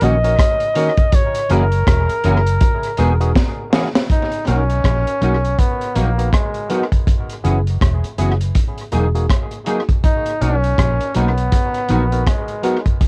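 Lovers rock reggae with a tender, romantic mood and a swung sixteenth-note feel, led up front by a clear flugelhorn melody with light vibrato and scooped notes, touched by cassette tape and tape echo. Beneath it, a barky, lightly overdriven tine electric piano comps through a combo amp, a mellow electric guitar adds chorused stabs, and a round, foam-muted vintage bass sits low and forward with transformer saturation. A crunchy, gritty breakbeat kit with a high-tuned snare and punchy kick drives the groove, rolling into a fill at 3.4 seconds before the second section opens, all in a homespun cassette recording with light reverb.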